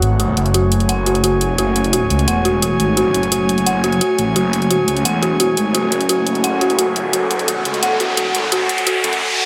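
Futuristic and aggressive, this dark, technical drum and bass passage runs at 173 BPM in F# minor and is cut from a longer piece, building up across its whole span over a single F#madd9 chord. A thick, swirling detuned saw bass sits up front with phaser and overdrive, while bright, overdriven electronic hi-hats, thinned by a high-pass filter, cut through alongside it. An eerie, inharmonic FM synth bell plays arpeggios from 0.2 seconds, its mellow tone softened by a low-pass filter and trailed by tape echo, over an airy, breathy pad with a noise layer and chorus. At 3.1 seconds a deep, moody ambient pad fades in at the back, its warbling, vintage character coming from chorus and built-in reverb, and a filter sweep runs through it. A riser enters at 5.9 seconds and a reverse cymbal lands at 9.2 seconds, pushing the build toward its peak in a loud mix with light digital ambience.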